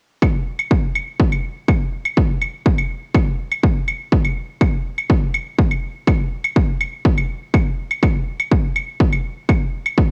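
A heavy, up-front electronic kick drum and quieter layered claves, both overdriven and bathed in studio reverb, open this dark, cinematic techno excerpt at 0.2 s and drive a straight 4/4 pulse at 123 BPM, captured as a home cassette recording with a digital ambience.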